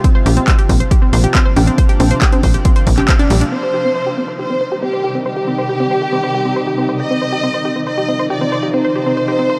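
Driving and emotional, this uplifting trance excerpt opens with a shimmering, ethereal pad holding sustained chords and a round analog pluck spinning arpeggios, both breathing with sidechain pumping and chorus, the pluck also carrying tape echo. Meanwhile an overdriven, up-front kick, a punchy analog drum machine with congas, handclaps and hi-hat, and a tight, nasal sequencer bass drive the groove until a band accent at 3.1 seconds. By 3.5 seconds the drums and bass have dropped away. The chord then moves to Cm, filter sweeps run over the pluck and pad, and a lush symphonic violin section enters up front with expressive vibrato and tape echo. The production is dark and tape-saturated, with light reverb.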